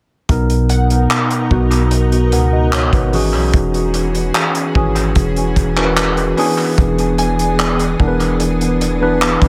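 An echo-heavy mix with light reverb and a studio ambience frames this smooth, tender contemporary R&B excerpt in a straight 4/4. Up front, a clean tine electric piano heard through its built-in speakers carries the accompaniment with analog delay, moving from Bmaj7 to E69 and then E7. A warm soul drum kit with handclaps, hi-hat and a tight kick sits close as well, its rolled-off top, tight booth and pumping room tinted by analog delay, while a long, deep 808-style bass holds sine-like notes that decay mellowly beneath. From 0.7 seconds a granular cloud pad drifts in the background with a blurred, evolving quality, its slow attack and long release softened further by its own reverb. A glassy wavetable pluck adds crystalline, detuned digital touches with chorus, a filter sweep and analog delay, appearing briefly at 0.7 seconds and again at 7.2 seconds.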